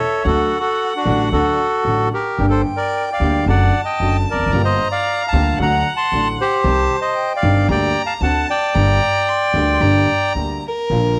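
A reedy, bright bandoneon sits up front carrying the melody in this melancholic, dramatic tango excerpt in G minor, moving at 112 BPM in 4/4 with a rubato feel. Alongside it, a rich solo violin plays a bowed second line with vibrato and portamento, expressive and set back in the mix. An upright bass gives a woody, thumpy pizzicato foundation with steel strings, while a clear concert grand piano with deep bass and a smooth, vintage tone supplies the accompaniment. A dark, lush studio string section adds very quiet bowed stabs with vibrato and a smooth top. The harmony circles through D, Gm, D/F#, Gm7, Cm and Gm/D before a D7 resolves to Gm at 8.7 seconds, and the bandoneon drops out at 10.3 seconds as the violin continues on to 11.2 seconds. The sound carries light reverb and small room ambience, recorded at home on cassette.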